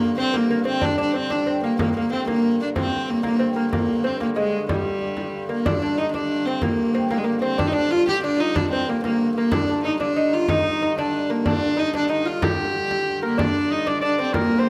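Close, detailed microphones capture this medieval dance in a moderate recital hall, where a reverb of about 1.7 seconds lends the ensemble an ancient, mysterious air. In G minor at 124 beats per minute in a straight 6/8, a pure, floating viola da gamba carries the melody up front, its airy bowing, soft attack and light vibrato ringing over the fretted strings. A delicate, fingerpicked lute with gut double strings and some octave doubling plays a second line colored by tape echo, while a dark, nasal, reedy hurdy-gurdy holds a low drone beneath. A frame drum joins at 0.3 seconds, played with hard hands and carrying a warm live-room tone. Near the close, at 13.2 seconds, a bright shawm enters with a second line of its own, its folk-style vibrato capped by a smooth top, just before this passage, cut from a longer piece, breaks off at 14.7 seconds.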